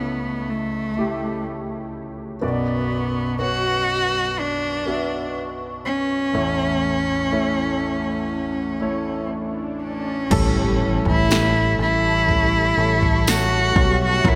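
A rich, bowed cello with smooth vibrato carries the melody of this tender, emotional pop ballad from the very first second, played close and up front by a single player. Beneath it, an intimate concert grand piano with deep bass, long sustain and audible action noise supplies the accompaniment, colored by analog chorus. At 9.4 seconds an electronic swell rises in the background and gives way at 10.3 seconds to an impact, as a deep house drum kit enters with a deep kick, punchy snare, crash cymbal and toms, overdriven and treated with gated reverb. A punchy fingered electric bass and a picked steel-string parlour acoustic guitar with fresh strings and lush chorus arrive with the drums, the guitar playing arpeggios in the background, joined at 11.3 seconds by a jingly, dry tambourine. From 11.8 seconds a cloudy, evolving granular pad adds blurred, sustained chords high above, all within a bright 1980s-style digital production with light small-room ambience.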